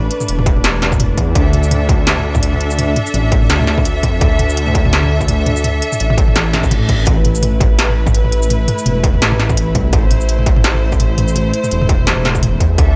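A rumbling, detuned sawtooth bass sits up front in this dark, cinematic half-time drum and bass cut at 168 BPM in A minor, under rich, vibrato-laden bowed strings with sidechain pumping, while an industrial kit with a clanging snare and smooth hats plays alongside a distorted electronic kick that enters at 0.5 s, and a brief reverse cymbal arrives at 6.7 s.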